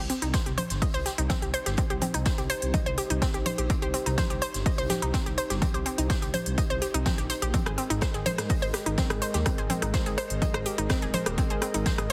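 Dramatic and driving, this melodic techno piece at 125 BPM in C minor, cut from a longer work, moves from Cm to Absus2 at 7.5 seconds over a punchy, up-front electronic kick, an overdriven techno kit of congas, smooth hats and rim click, a natural-sounding swinging big-band kit of hi-hat and snare sitting in the background, a deep, rumbling detuned saw bass, lush wave-folded unison pluck arpeggios with delay, and a moody, chorused analog pad entering at 1.1 seconds, with sidechain pumping on the bass, pluck, pad and big-band hats, light digital reverb, and a heavily compressed, radio-like sound.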